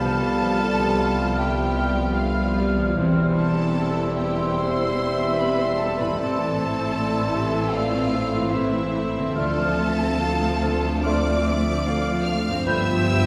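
A slow romantic movement for symphony orchestra in classical style, this lyrical, tender passage moves at 75 BPM in 4/4 with a rubato feel, cut from a longer piece in C major. A lush violin section carries the melody high in its range with a smooth top and vibrato. Around it, an airy flute ensemble, a clear clarinet with soft attack, a second, more even violin section and a dark cor anglais weave supporting lines. A mellow bassoon, a focused viola section, a French horn section holding soft sustained chords and a ringing fingerpicked concert harp playing arpeggios fill the middle. Cellos and double basses anchor the bass, and round timpani on soft mallets are barely audible during the first second only. The whole is heard from further back in a wet concert hall, and the harmony drifts from G7 over C through Am and Dm7 to a closing G7 at 12.7 s.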